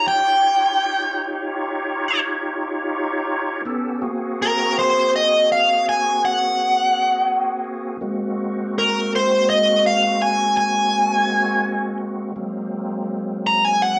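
A large studio's generous reverb surrounds a band playing live in one room, in this soulful, laid-back slow blues cut from a longer piece, moving in 12/8 at 55 BPM per dotted quarter. Up front, a smooth, overdriven electric lead guitar picks a singing melody from Bb4 to Bb5, while a reedy tonewheel organ with audible key click holds sustained chords through a slow rotary speaker and chorus vibrato. The harmony rests on Eb9 before shifting to Ab9 at 3.7 s, with both parts playing throughout the 14 seconds.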